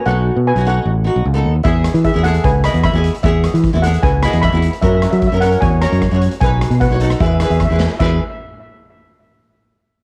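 A bouncy, sunny calypso excerpt in E major at 151 BPM opens with a mellow, shimmering steel pan melody struck with soft rubber sticks and colored by cassette tape and analog delay, joined at 0.1 seconds by a bright, fingerpicked, double-tracked flamenco guitar and an up-front fingered electric bass, before a boomy, airy street-band drum kit with dark cymbals enters at 1.6 seconds and plays a fill at 7.8 seconds, all in a lightly reverberant home cassette recording.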